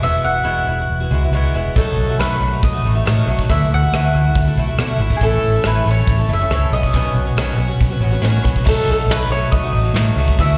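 This short cut from a longer performance sounds like a live gig heard through the venue's PA, with the reverb of a recital hall around it. It is nostalgic, jangly folk rock with a heartland rock lean, moving at 139 BPM in a straight 4/4. A mellow mandolin carries the melody from the start, its doubled strings ringing with a slapback echo. Beneath it, a bright, boxy acoustic guitar is picked in a swing style, with fresh strings, audible finger squeak and its own slapback echo, while a foam-muted, round electric bass sits up front with a dark, amped tone. A soft brush drum kit with dark cymbals and a tight kick joins at 1.8 seconds and plays a fill at 8.2 seconds before the passage starts again. The chords move through Eadd9, B7, Dadd9, A and Badd9.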